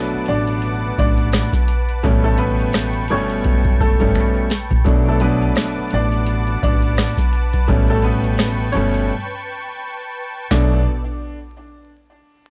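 Moody, gritty boom-bap hip-hop at 85 BPM in B minor, cut from a longer piece, where a bright, intimate upright piano with audible action noise and tape echo carries the melody over smooth, vintage grand piano chords, a lush, detuned chorused pad, and a woody pizzicato upright bass with tube saturation, while an up-front analog drum machine with a deep kick, crisp snare and metallic hats handles the drums, with a drum fill at 4.2 seconds and a break at 9.1 seconds, joined from 1.3 seconds by a very quiet human finger snap, all in a dry small room with vinyl crackle.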